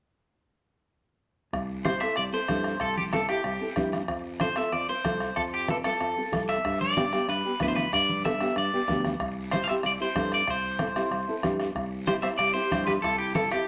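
A bright, twangy electric guitar at the edge of break-up carries the melody up front, bathed in spring reverb, in this festive, joyful cumbia excerpt at 188 BPM in C major, moving through C, F and G before returning to C. Beneath it, a dark, full-bodied nylon-string guitar is thumb-plucked alongside a growly fretless electric bass, while low-tuned congas played with soft hands, a soft-beater bombo and a raspy guiro keep the straight 4/4 groove in a small, wet room. A breathy clarinet with vibrato slips in at 12.1 s, adding a jazz-style second line in the background.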